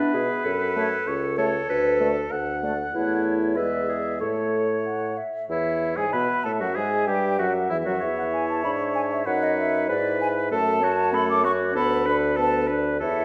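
Cheerful and graceful, this quick classical-period movement for wind quintet moves at 96 BPM in a straight 2/4, centred on A major, and is heard as a passage cut from a longer piece. A mellow, hollow silver concert flute carries the melody with vibrato and tongued notes, rising as high as D6, while a clear, close-miked oboe with light vibrato shapes a second line beneath it. A clear clarinet and a French horn supply the accompaniment, the horn sounding warm, distant and roomy with a touch of vibrato. A dark, smooth-topped bassoon sits up front on the bass from 0.1 seconds, its low register reaching down to C#2. The harmony passes through F#m, D6, E7 and a closing Bm7/D across two statements of the opening idea, the second beginning at 5.5 seconds. The ensemble plays in a wet recital hall reverb that gives the parts a gentle halo.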